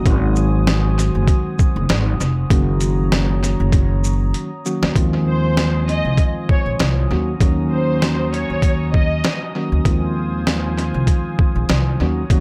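A dry, echo-heavy mix frames this moody, reflective boom-bap hip-hop excerpt at 98 BPM with a light swing, where muffled, pitched-down sampler drums with a thumpy kick and a woody pizzicato upright bass sit up front under mellow tine electric piano chords and a detuned, warbling analog pad, as a drum fill at 3.7 seconds leads into a distant, lush bowed violin section that enters with vibrato and portamento at 5.3 seconds before dropping out at 9.4 seconds over chords moving from Ab7 to Fm7/Eb.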